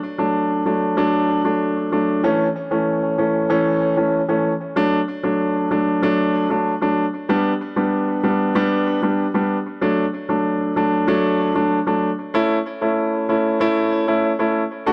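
This short dancehall cut sits in a light reverb and centers on a warm, polished, up-front solo grand piano treated with a digital delay. The summery, bouncy piano enters at 0.2 seconds and plays alone in its low-to-middle register, moving into a new section at 9.8 seconds before the piece is cut off at 14.9 seconds.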